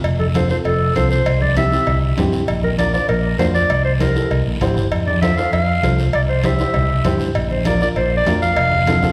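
This danceable, joyful cumbia opens at 0.0 seconds with a growly, amped fingered electric bass up front, close and dry metal-shell cowbell and timbales that ring out, and a raspy guiro. Within the first 0.3 seconds the rest of the band joins: medium-tuned congas played with soft hands sit in the background, and a dark, mellow, woody upright piano fills in the accompaniment. A jazz-style clarinet takes the solo melody up front, its subtone carrying a light vibrato, scooped notes and a smooth top. The tempo is a brisk 197 BPM in a straight 4/4 in F major, with the harmony cycling through F, C, Bb and C7. A wet recital hall reverb gives the whole piece the airy bloom of a church or concert hall. This short passage is cut from a longer piece.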